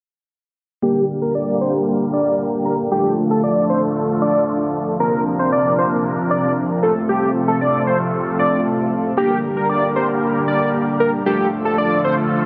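From 0.8 s, three synthesizer parts enter together in this driving, energetic pop passage, cut from a longer piece and built on a straight four-beat pulse. A thick, bold unison lead carries the melody up front, its detuned sawtooth tone rounded with a sub octave, touched by delay and softened by a low-pass filter. Beneath it, a retro, glossy chorused polysynth plays the accompaniment with a full-bodied blend of pulse and square waves, while a filtered supersaw swell holds airy, evolving sustained chords with a soft attack and a noise layer. A filter sweep runs across the whole passage as the harmony moves from Gm to Dm, Bbadd9 and F before returning to Gm and Dm. The parts sit in a lush hall reverb, with lossy compression artefacts audible in the sound.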